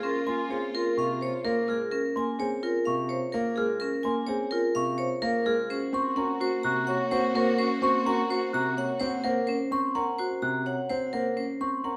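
A ringing, metallic vibraphone played with hard mallets carries the melody up front with a slow motor vibrato in this urgent yet meditative stretch of minimalist classical pattern music at 127 BPM in Db major, cut from a longer piece. Around it, a woody, round marimba and a delicate, bell-like celesta spin arpeggios while an intimate grand piano with audible action noise keeps up the accompaniment. A distant clarinet and a rich, focused chamber string section holding sustained chords sound at the opening and return from 5.7 seconds, as the harmony moves from Db6 to Gb, until 9.2 seconds, all set in a moderate recital hall reverb.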